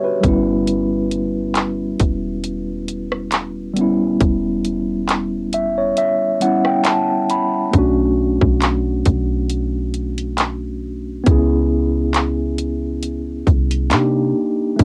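Contemporary R&B at 68 BPM with a lightly swung, longing and moody feel, built on a mellow tine electric piano with a cassette-tape haze that plays a fill from 5.1 s, a deep, round 808-style bass, and an up-front trap kit of hard-clipped kick, metallic hats, handclaps and rim clicks whose kick drops out from 6.0 s before the music settles into B dorian at 7.7 s, heard as a home cassette recording in a small, booth-like room.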